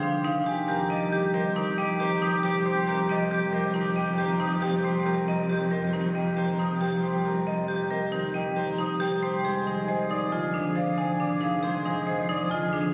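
A straight five-beat metre drives this meditative yet urgent minimalist classical pattern piece, cut from a longer work. A bright, brilliant baby grand piano carries the melody with audible action noise, while a close-miked marimba with medium hard mallets sits up front with a full, dry arpeggio figure. Above it, a bell-like large celesta adds delicate, sweet arpeggios, a ringing fingerpicked concert harp stays in the background, and a rich bowed cello supplies an expressive bass with vibrato and portamento. A light-vibrato oboe plays a second line from 0.7 seconds, drops out, and returns at 9.5 seconds as the harmony settles into a new section, all heard through a phone recording in a church with a long, wet reverb and compression.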